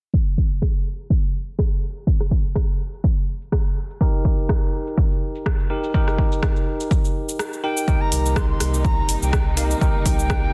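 A dense, heavily limited modern mix with little reverb and a filter sweep through the opening carries this hypnotic, earthy afro house at 124 BPM. A punchy, overdriven electronic kick sits up front beside an afro-pop kit of cabasa, metallic hi-hats and rim clicks, and bell-like electric piano stabs with sidechain pumping and digital delay enter at 4.0 seconds. During a brief break, a pure, distant flute line with dub echo arrives at 7.6 seconds, before a round sub bass and veiled, muted strings join at 7.9 seconds as the harmony moves from Eb to Cm7.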